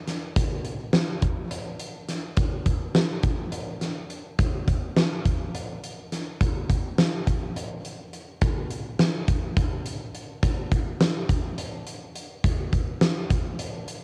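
Driving and bright, this progressive instrumental excerpt moves at 209 BPM in an odd 7/8 metre with a straight feel. A huge acoustic arena drum kit carries it from 0.1 to 14.0 seconds, sitting up front with a fat snare, a punchy kick and hi-hat, its big-room character colored by a cassette tape effect. The home cassette recording places it in a short, wet booth ambience, and the music shifts into a new section at 2.4 seconds.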